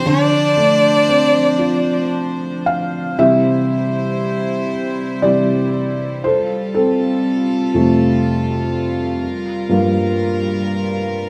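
Celtic slow air at 59 BPM in a rubato 3/4, mournful and longing, where a rich, vibrato-laden violin carries the melody over a clear fiddle's second line for the opening 2.1 seconds before a soft, felt-muted upright piano takes a solo from 3.2 seconds, all while a chamber string section with gut-string, reedy tone sustains chords from Dm7 through C and Fadd9 to Gm7 inside a recital hall reverb.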